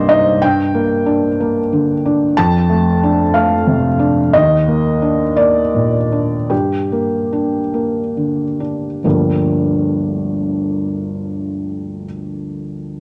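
Neoclassical minimalist piano in a wistful, reflective 6/8 with a rubato feel, this short excerpt features a solo felt-muted upright piano, soft, mellow and intimate with thick felt, placed up front and colored by cassette tape, drifting through Gm, Dm7/F, Eb5 and back to Gm while slowing from 3.3 to 9.0 seconds before a brief second section opens on Gm7 at 9.0 seconds, all within a small room ambience and a wet spring reverb.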